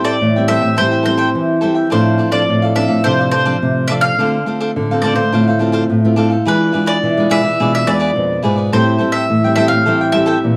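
A picked bowl-back mandolin carries the melody up front, its doubled strings ringing with a warm, lively yet yearning line in this samba fragment cut from a longer piece, set in A minor at 106 BPM in a straight 4/4. Beneath it, a bright, crisp cavaquinho and a fingerpicked classical nylon-string guitar fill in the harmony, while a second, small-sounding nylon-string guitar plays a thumb-plucked bass up front from 0.2 s; both guitars show a touch of finger squeak. The harmony moves from Am7 through F6/A and E7b9 back to Am7, and the dry, close 1970s-style studio sound sits in a small room.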